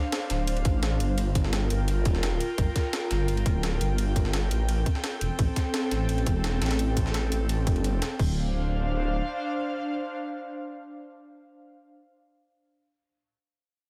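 An airy, breathy pad opens this rolling, melancholic liquid drum and bass excerpt at 171 BPM in D minor, holding soft chorused chords through Dm7, Gm7 and Am7 while a menacing detuned saw bass with a filter swell, a tight overdriven electronic kick, gritty high-tuned breakbeat snare and ride, and bright overdriven hats drive the groove until the drums drop out near 8.3 seconds. The bass continues until 9.2 seconds, and the pad sustains in light digital ambience until 11.8 seconds.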